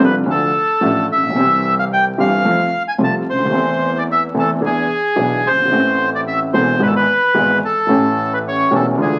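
A reedy bandoneon carries the melody up front from the very start, joined at once by a woody, slightly detuned upright piano and a bowed double bass. This sultry, dramatic tango moves at about 110 BPM in 4/4, though the rubato feel lets the time bend and breathe. The piano, also up front, supplies a warm accompaniment, while the single bowed bass sits in the background with an intense, biting tone, audible vibrato and the airy sound of the bow heard close up. The harmony travels from Dm through C, F and Am/E to E7, then turns toward Amadd9, E/G# and finally A7. A moderate club reverb surrounds the trio, and the sound of a very old 78 rpm record, complete with vinyl crackle, gives the 9.2-second fragment, cut from a longer piece, an antique patina.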